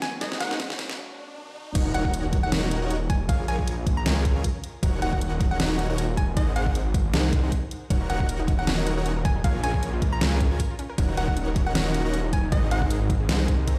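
A swung, half-time 156 BPM groove in 4/4 drives this bittersweet, emotional future bass cut in Eb dorian, opening on a short build-up where glassy digital keys, a background riser and pop drum kit fills gather over an Ab9 chord before the drop lands at 1.8 seconds. From there a knocking, overdriven electronic kick and a deep-snared kit drive beneath a thick, up-front detuned saw bass and a huge, airy supersaw riff, while a hollow, nasal square pluck carries the melody through tape echo, cycling Ebm7, Bbm7 and Ab9. At 7.9 seconds a warbling, vintage unison pluck adds arpeggios with dub echo, all heard as if blasted through a big sound system in a bare stone room.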